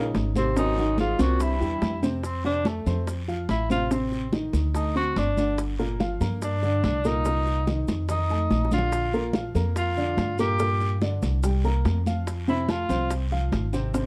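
Afro-Cuban jazz in a sunny, danceable groove, cut from a longer piece, where a vintage tenor saxophone with light vibrato leads up front and takes a solo from 2.2 seconds, a mellow baritone saxophone with subtone and soft attack adds a background second line until 2.0 seconds, a woody, boxy upright piano plays accompaniment with short sustain, a steel-strung pizzicato upright bass sits up front, and round low-tuned bongos, bright damped congas, a raspy guiro and grainy maracas fill out the percussion under light reverb in a dark, warm production.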